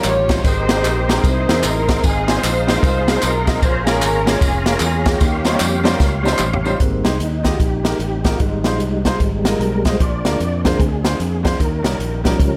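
The swinging big-band drum kit sits up front in this uptempo gospel excerpt, its punchy kick and medium-tuned snare driving a reverent, jubilant groove at 151 BPM in Ab major with a 62% swing on the eighths. A muted string section carries the melody at first, its con sordino tone veiled and distant yet lush, over a brilliant concert grand piano with deep bass and a round, punchy fingered electric bass. Compressed, saturated group handclaps and tambourine with a tube shaker add grit until about 6.7 seconds, and a clean tonewheel organ enters at 0.5 seconds with sustained chords through a slow rotary speaker and chorus vibrato. After a drum fill, the organ takes a solo from 6.8 seconds while a very quiet, dark French horn section holds tight, smooth chords beneath it. The harmony moves through rich chords such as Abmaj9, C7alt and Eb13, and a small room ambience surrounds the band, while the drums carry an airy, polished sheen.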